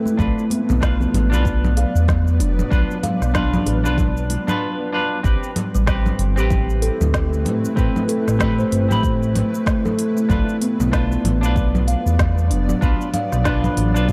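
A smooth, up-front synth bass with sidechain pumping anchors this mystical organic downtempo excerpt, joined by a deep, overdriven electronic kick and a swung electronic kit of congas, woody snare, crisp hi-hat and shaker, while very quiet soft-handed congas and bongos ring only until 4.4 s. A mellow, woody kalimba plays arpeggios through tape echo, and a bright, clean semi-hollow electric guitar accompanies with lush chorus, tape echo and pumping. Behind them, a blurred, evolving granular cloud pad holds sustained chords in its own reverb, with the music moving into a new section at 5.2 s within a dark, warm production.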